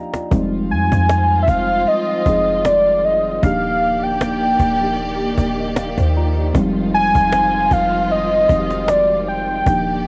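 A late-night, moody slice of contemporary R&B at 77 BPM in F dorian, opening with a brief cajon and synth-keys fill before settling into a lightly swung groove over Fm7 and Ebmaj7. Snappy, close and dry cajon hits and a deep, boomy 808-style bass sit beneath muted, felt-like synth keys with a dark chorus-tinged shimmer, while a distant, lush string section holds sustained chords and the keys return with another fill around 5.0 seconds. Up front, a velvety synth lead with chorus and vibrato carries the melody from 0.7 seconds, and cassette tape colouring on most parts and light reverb give the piece an intimate home-recorded feel.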